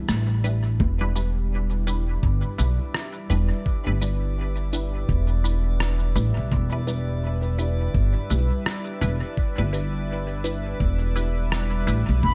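The recording sounds close and fairly dry, with the woody pizzicato upright bass sitting up front on an E minor seventh chord. This is a meditative, hazy stretch of ambient dub at 84 BPM in 4/4, cut from a longer piece, with a swung sixteenth-note feel. A smooth, mellow analog pad holds sustained chords under chorus, while a muted, detuned dub chord stab plucks through phaser, cassette-tape colour and dub echo. The sampler-style drums are pitched down and muffled, re-recorded in a large room: a thumpy electronic kick, and a rim click and shaker that trail dub echo and join the band in a short accent at 0.1 seconds. A faint, glassy texture of drifting overtones hovers in the background from 1.3 seconds. At 12.2 seconds, just before the cut, a bright silver concert flute sounds a single pure, tongued B5 with vibrato.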